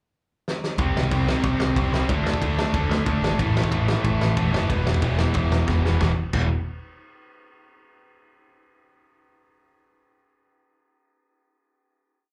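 A double-tracked, distorted electric guitar leads this short, energetic punk rock piece, hammering bright, compressed eighth-note power chords through a C5, D5, A5, E5 riff with a touch of slapback echo. The loose indie drum kit opens with a fill at 0.5 seconds, then settles into a two-step groove with a fat snare, a punchy kick and dark crash and ride cymbals, its sound rolled off on top. From 0.8 seconds a growling, overdriven picked bass joins the guitar in driving eighth notes, sitting a little louder than the other parts. After another drum fill, the band lands on a final chord at 6.0 seconds. The upbeat performance comes across as a live club gig heard through the venue's PA, with small-room ambience and club reverb around the players.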